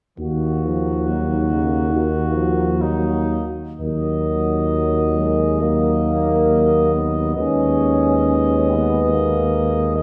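A melancholic, yearning hymn-like brass band passage in Eb minor opens at 0.2 seconds with a distant, roomy cornet singing the melody over a dark French horn section in the background, a punchy trombone with a smooth top, a tight trombone section with vibrato, and a mellow, up-front tuba holding Eb2, all moving in rubato around 57-73 BPM through Ebm and then Abm/Eb at 7.4 seconds, heard from further back in a concert hall with a 1.8-second reverb.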